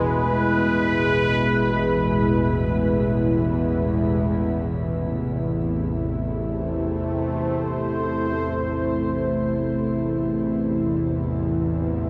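This dark ambient drone drifts in free time in A harmonic minor, tuned slightly low at A4 = 438 Hz, and its mood is unsettling and ominous. Up front, a sweeping resonant pad holds sustained chords from B2 to C5, its detuned sawtooth tone evolving under slow filter swells, with chorus and a shimmer reverb. Beneath it, a string-like bowed drone sits low between A1 and E2, tense and nasal with vibrato and a noisy edge; a filter sweep moves across this drone until 4.7 seconds. A bronze singing bowl, struck with a felt mallet, rings faintly with slow beating, barely audible under the opening E chord. At 4.7 seconds the harmony settles onto A minor as a tam-tam briefly shimmers in, just as faint, before dropping out at 6.8 seconds. An 8.4-second reverb soaks the whole dreamy mix, and the passage is cut from a longer piece.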